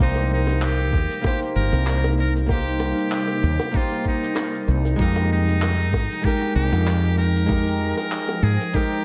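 A buzzy, metal-muted trumpet leads this smooth sunset chillout excerpt at 96 BPM, singing a jazz-style solo with vibrato through analog delay over a lightly swung 4/4 groove that moves from Cm7 to Fm11 at 5.0 seconds. A fingerpicked flamenco guitar, finger squeaks and all, adds warm accompaniment roughened by vintage 12-bit sampler grit and tape echo, while an ethereal, detuned pad holds mellow chords in the background and a dark, round fretless electric bass sits up front until 8.6 seconds. A thumpy, sampler-style electronic kick joins at 0.9 seconds beneath gritty shaker and handclaps with dub echo and very quiet, tight, high-tuned bongos, all set in a light, echo-heavy mix with softened highs.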